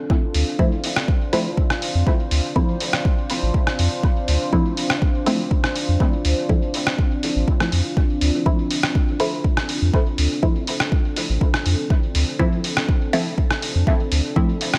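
This is a meditative, nocturnal slice of dub techno in D minor at 122 BPM, opening on a deep, dark ambient pad that holds a sustained Dm7 chord from 0.0 seconds, its slow-attack, detuned tone thickened by chorus and its own reverb and breathing with sidechain pumping. An up-front, layered electronic kick follows almost at once, joined by a round sine sub bass that sits low and prominent, pumping in the same sidechained way. A lo-fi sampler-style kit adds hi-hat and rim click, sounding pitched down, muffled and compressed, as if re-recorded in a large room, and trailing dub echo. A muted, filtered chord stab built from detuned sawtooth and square waves enters at 0.6 seconds with short plucky decays, phaser and dub echo, while a filter sweep runs across it for the whole passage. The echo-heavy mix carries a light digital ambience, and the piece plays as a single section cut from a longer track.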